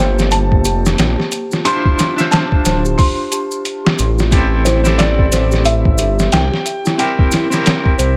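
A dry trip hop excerpt, brooding and hypnotic at 90 BPM in G dorian with a 16th-note swing, where a muffled, pitched-down sampler drum kit with a thumpy kick and a rumbling detuned saw bass with tube saturation sit up front beneath a felt-muted upright piano melody with audible action noise and tape echo, a bright, clean electric guitar accompaniment with tremolo and tape echo, bell-like celesta arpeggios with tape echo, and faint maracas entering at 0.2 seconds, all over chords moving through Gm9, Dm9, Am7 and C7.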